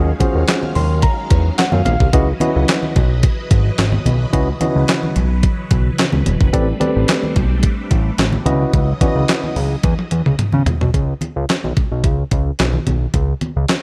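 Funky and late-night, this short cut of early-eighties boogie funk moves at 109 BPM in a straight 4/4, carried by a fat, sawtooth-edged analog bass and a crisp 8-bit drum machine with a thumpy kick, fat snare, handclaps, hi-hat and toms, both up front, while low-tuned congas sit in the background. A worn, slightly out-of-tune tine electric piano, lightly overdriven, plays accompaniment with a fill from 0.5 to 2.1 seconds, over swirling vintage string-machine chords treated with ensemble chorus and phaser, moving through minor eleventh chords from D#m11 to Am11 and back to C#m11. After a drum fill at 9.8 seconds the string machine stops at 10.9 seconds, and the bass, drums and congas settle onto a C#7(no3) chord in a dark, dry production.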